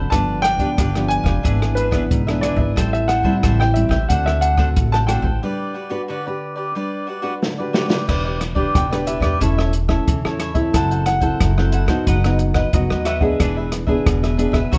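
Close, detailed microphones and a light reverb give this lively, sunny samba-and-choro excerpt a close, detailed sound, cut from a longer piece in a straight four-four feel. A baby grand piano with a natural tone and a touch of plate reverb carries the melody, while a crisp, picked cavaquinho and a thumb-plucked classical nylon-string guitar fill in the accompaniment. Beneath them, a woody pizzicato upright bass with steel strings anchors the low end. An open jazz kit sits up front with a small-room, smooth character, dark cymbals, a medium-tuned snare, a boomy kick and a rolled-off top, using hi-hat, rim click and crash. A break arrives at 5.4 seconds with a drum fill leading into a piano solo at 8.1 seconds, where the harmony turns toward a minor key, and the piano drops out at 13.7 seconds while the band carries on.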